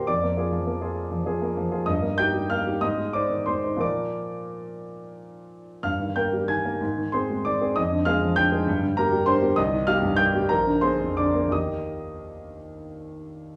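A close, up-front concert grand fills this recording, its smooth, vintage tone carrying a deep bass, set in a moderate large-studio reverb of about 1.1 seconds with a touch of small-room ambience. The music is a romantic classical character piece for solo piano in E-flat major, lyrical and hopeful, moving in a gently flowing 6/8 at roughly 55-69 BPM counted in dotted quarters. The rubato playing lets the pulse breathe freely as the piano spans its range from Bb1 up to Ab6, tuned to A4 = 441 Hz. The harmony opens on Bb7 over F, passes through Eb over G, Ab and Bb, then darkens through Ddim over F, Gm and Cm before Bb7 leads home to Eb at 11.5 seconds. This brief passage of about 13.6 seconds is cut from a longer piece.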